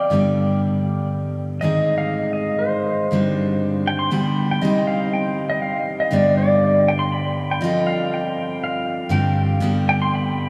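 Reflective and intimate, this folk excerpt in 3/4 sets a clean, compressed electric pedal steel guitar melody, played with fingerpicks, slide and volume swells and trailed by a diffuse ambient delay, over a bright, full-bodied jumbo acoustic guitar picking accompaniment, both up front in a dreamy mix soaked in cathedral reverb as the chords move from G and Ab to Cm at 4.6 s.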